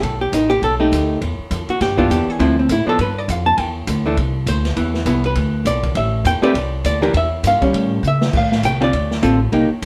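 A cool, smoky mood settles over this short cut from a longer small-group swing and bop piece, moving briskly at 202 BPM in 4/4 with a 60% swing on the eighths, centred in A minor. An archtop guitar, miked and amplified, carries the accompaniment with a clean, picked, hollow-body tone that sits up front, comping through changes such as B7alt, Em7, Dm9, F69 and Am7. The upright bass is also close, its pizzicato steel strings giving a woody sound across a low range. Further back, the open jazz drum kit sounds distant and roomy, with dark cymbals, a medium-tuned snare and a boomy kick, and it plays a fill at 8.0 seconds just before the form restarts at 8.3 seconds on Dm7. A wet studio reverb casts the whole group as if heard from deeper in the room.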